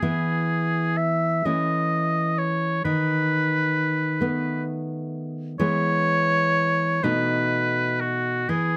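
In a slow 6/8 at 42 dotted-quarter beats per minute, the pulse is uneven and elastic, with rubato giving this romantic duo an unhurried, breathing feel. The oboe carries the melody with a clear, classical tone and light vibrato, sitting up front between F#4 and E5. Beneath it, a nylon-string guitar provides fingerpicked accompaniment that sounds full-bodied and deep, ranging from B2 to E4 and equally present in the mix. The harmony rests in E, moving through A/E and B7/D# before returning to E and settling on B7 near 7.0 seconds. Light reverb lends a gentle sense of space, and the tuning sits at A4 = 439 Hz. Cut from a longer piece, the 8.8-second passage feels tender and serene throughout.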